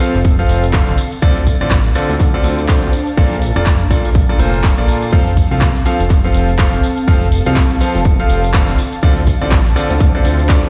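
Heard through a big sound system in a bare, stone-walled room with light digital ambience, this euphoric, uplifting piano house passage, cut from a longer piece, moves at 123 BPM in 4/4 with a swung sixteenth feel in F major. A bright, brilliant grand piano carries the riff, present, intimate and polished, with audible action noise, sidechain pumping and a digital delay. An overdriven, punchy electronic kick arrives at 0.2 seconds, sitting forward, while an overdriven house kit supplies crash cymbal, handclaps and hi-hat, and a close acoustic tambourine sits in the background. A fat, thick analog bass enters at 0.1 seconds, detuned and wave-folded with a filter sweep and sidechain pumping. Behind it all, an ethereal, airy pad glows softly with ensemble chorus and built-in reverb over chords moving from F to Dm7 and Bbmaj7 and back.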